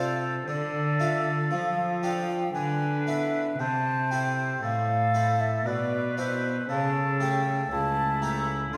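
In a slow, rubato 3/4 at 58 BPM, this solemn, flowing baroque-style sonata movement in A minor unfolds over about 8.8 seconds, cut from a longer piece. The baroque flute carries the melody between C5 and C6 with an airy, wooden straight tone and crisp attack. A solo oboe sings a second line beneath it with light vibrato, sounding distant and roomy in a classical style. A single bowed cello anchors the bass up front with a rich, gut-string period tone edged with something reedy, while a Flemish-style harpsichord fills in the accompaniment with a full, brilliant plucked sound from three sets of strings. The harmony moves from D minor through E7 over D to A minor and then A7 over C sharp. A church or concert hall acoustic wraps the ensemble in a wet reverb that lets each chord hang for around 1.5 seconds.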